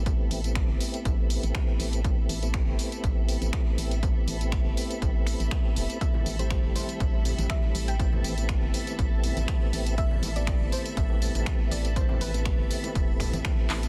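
A punchy, dry kick sits up front at 0.1 seconds, with an analog drum machine adding finger snaps, handclaps, hi-hat and tambourine over a lightly swung groove, while a hollow, organ-like FM bass with tube saturation and a mellow tonewheel organ playing stabs through slow rotary speaker and delay pump together under a single Am9 chord in this moody, late-night deep house excerpt. A clear symphonic string section holds a smooth, bowed texture above. From 6.0 seconds a soft round pluck melody with tape echo and a shimmering vintage string machine join in the background, followed at 6.1 seconds by distant, ringing congas and bongos. The mix is dense and heavily limited with little reverb, closing on a drum fill at 13.7 seconds.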